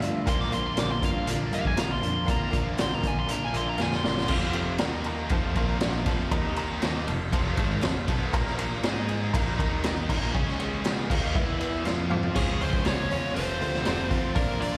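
Classic rock at 119 BPM with a swaggering, driving feel, this excerpt from a live gig heard through the venue's PA in a recital-hall reverb is built on gritty, boomy drums up front, an overdriven fuzz bass, a pair of bright cranked stack guitars riffing in the background alongside a very quiet distorted electric guitar, a metallic, jangly tack piano with slapback echo, and faint crisp group handclaps, while a compressed fuzz lead guitar with slapback echo sings its melody from 0.3 to 4.3 seconds and returns at 12.4 seconds.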